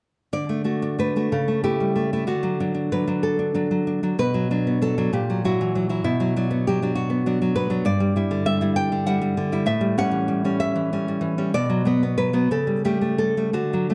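Nostalgic and tender, this short excerpt from a longer romantic piece for solo classical guitar moves in a lilting 6/8 with a free, rubato feel. The fingerpicked nylon-string guitar sits up front, bright and full-bodied, spanning G2 to G5 with a touch of slapback echo, and winds through a chord progression that settles on Bm at 4.2 s before turning toward A7 near the close. A moderate recital-hall reverb and a dark, warm production surround the guitar from 0.3 to 13.9 s.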